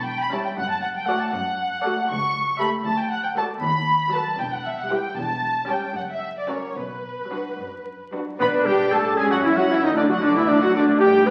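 A restless, urgent classical-period orchestral movement in B minor, taken at a quick 6/8 with rubato. Veiled, con sordino strings carry it: violins up front on the melody, a second violin line, viola accompaniment, and distant cellos with background double basses beneath. At 8.4 seconds a pure flute, smooth oboe, very quiet dark clarinet and mellow French horn chords join, with a brief entry of hard-mallet timpani. All of it sits in a recital-hall reverb on a crackling, very old 78 rpm record.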